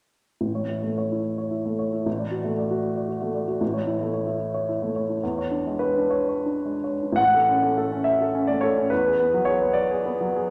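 A clear baby grand piano opens at 0.4 s, playing alone in a lyrical romantic character piece in A major. It moves in 6/8 with flexible rubato between 51 and 78 BPM, counted in dotted quarters, and ranges from deep A1 bass up to F#5. The polished, up-front tone sits in a generous recital hall reverb as the harmony moves from A through D over A to an E6. A contrasting passage begins at 7.2 s, returning to A before closing on an E9 at the cut-off, since this is taken from a longer piece.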